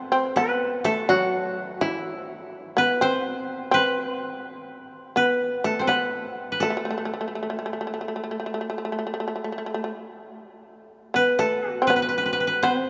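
A fingerpicked koto with a woody, up-front tone carries the melody while a buzzing, percussive plectrum-plucked shamisen plays a powerful second line beneath it, both sounding together from the start in a solitary, still fragment of Japanese traditional chamber music that flows in free rubato, bathed in a long cathedral reverb, and turns to a new passage at 11.1 seconds.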